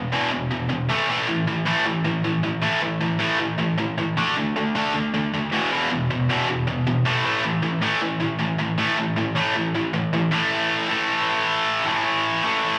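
A tight, distorted electric guitar opens this heavy, menacing rock fragment, playing alone from the start through 12.8 seconds. Its picked, double-tracked tone sits up front and bright, carrying slapback and tape echo. The part covers a low-to-middle range and moves through E5, A5 and D5 power chords in a straight 4/4 feel. A new section arrives at 10.3 seconds and carries on until the cut at the end. The sound comes through a club PA, with light reverb and a digital ambience giving the room its live, gig-floor character.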